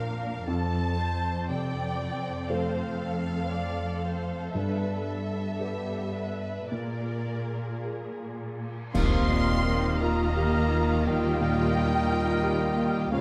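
A dark, warm scoring-stage sound with moderate reverb frames this tender, moving fragment of cinematic film score for orchestra, moving in a slow, rubato 4/4 at around 52 to 60 BPM. From the start, a violin section carries the melody with soft attacks, vibrato and expressive portamento, while a second, distant violin line, a smooth viola section and an intimate grand piano with audible action noise fill the accompaniment over a rich, even cello bass. The harmony drifts through F, Gadd9 and Bb7, and at 4.5 seconds a cymbal swell, bright clash cymbals and concert bass drum rise in, running until 11.0 seconds. At 8.9 seconds the music settles into Eb major on an Ebadd9 chord with a band accent, as a crisp, airy flute group, a smooth-topped cor anglais solo and a roomy, mellow French horn section holding sustained chords join the texture, with a background clarinet following a moment later. 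A studio double bass section enters at 8.9 seconds to deepen the low end with its bowed, soft-attacked tone, carrying the passage to its close at 13.2 seconds.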